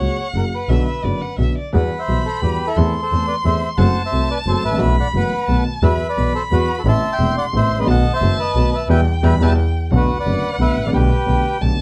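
A clear, focused double bass stands up front in this tense, melancholic tango excerpt in E minor, its bowed single line carrying vibrato and a smooth top beneath a reedy bandoneon that carries the melody. A rich, distant violin weaves an expressive second line with vibrato and portamento, while an intimate baby grand piano, its action noise audible, supplies accompaniment at 176 BPM in a rubato 3/4. Light reverb and a dark, warm production frame the ensemble, which lands a band accent from 8.9 to 9.9 seconds.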